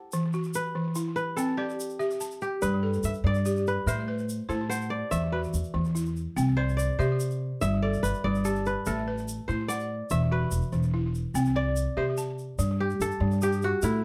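West African traditional music for strings and xylophone, this flowing, hypnotic passage is cut from a longer piece and moves in a straight 12/8. The fingerpicked kora carries the melody with a crisp, ringing acoustic tone and takes a solo from the start through 12.6 seconds. Beside it, the balafon plays arpeggios across a broad span with rubber mallets, its dry, buzzing sound marked by a slapback echo, and both instruments sit up front. A grainy, bright egg shaker adds a live-room shimmer further back, while the pizzicato upright bass enters at 2.6 seconds with a dark, woody voice and steel-string bite. The harmony cycles through chords such as C, G and Am before shifting to a new section at 12.6 seconds on Gsus2, all captured with close, detailed microphones and light reverb.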